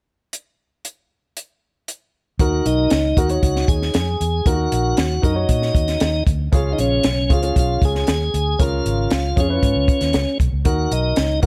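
A compact cocktail drum kit opens this uptempo 1960s-style soul excerpt at 0.3 seconds, its dry, high-tuned snare, punchy kick and hi-hat sitting up front over a straight 116 BPM pulse in 4/4. At 2.4 seconds the band arrives together and settles on Eb minor. A tonewheel organ carries the melody between Db4 and Ab4, its piping, scooped tone lightly overdriven and turning through a slow rotary speaker. Beneath it, an upright piano adds woody, intimate accompaniment with audible action noise and long sustain. A vintage fingered electric bass, foam-muted, dark and round, anchors the low end, while the harmony moves from Eb minor to Db and back to Eb minor near 10.7 seconds. Set in a small room, the piece feels urgent and driving.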